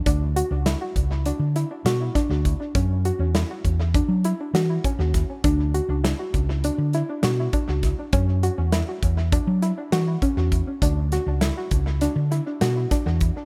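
In a straight 9/8 at 201 BPM counted in eighths, this bright, driving progressive instrumental in D major sets a soft, warbling vintage synth pluck playing arpeggios through chorus and tape echo over a dark, amped, hollow-body short-scale fingered electric bass and an up-front small-room country drum kit of hi-hat, tight kick and medium-tuned snare with its own tape echo, alternating between Dadd9 and F#5 in an echo-heavy mix with light reverb.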